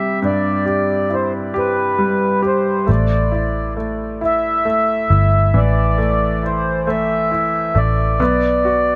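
In a slow, straight 6/8 pulse, this dramatic, melancholic pop excerpt sets a reedy, mellow accordion melody, colored by tape echo, over a clear, intimate concert grand piano accompaniment with deep bass, long sustain and audible action noise. At 2.9 seconds a dark, foam-muted fingered electric bass enters, round and punchy, as the harmony moves from Cadd9 to A5 and then Bm at 8.2 seconds. Accordion, piano and bass all sit up front in an echo-heavy mix with light reverb and small room ambience.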